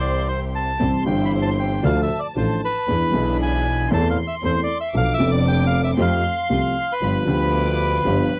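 Tango, playful and elegant, at 116 BPM in a rubato 4/4 in C major: a dark, reedy, up-front bandoneon carries the melody over a woody upright piano with audible action noise, a bowed gut-string double bass, very quiet, lush string-section stabs and a floating, distant violin section with slapback echo on a high second line, all in a dry, close 1970s-style studio sound as the chords move from C through Dm, E7 and Bm7b5 to G7.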